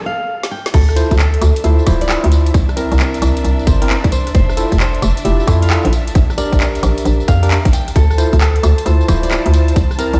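Swung two-step UK garage at 133 BPM in D minor: after a brief break where a fingerpicked nylon-string guitar melody opens and a drum fill with woody snare and metallic hats arrives at 0.4 seconds, the drop at 0.7 seconds brings a tight, up-front electronic kick, a hollow, knocking FM bass with tube saturation, lush sidechain-pumped violins in the background, and barky, overdriven electric piano stabs with delay from 1.0 seconds, moving through Dm9, C7, Fmaj7 and Bb6 in a late-night, skippy groove heard in a bare stone room.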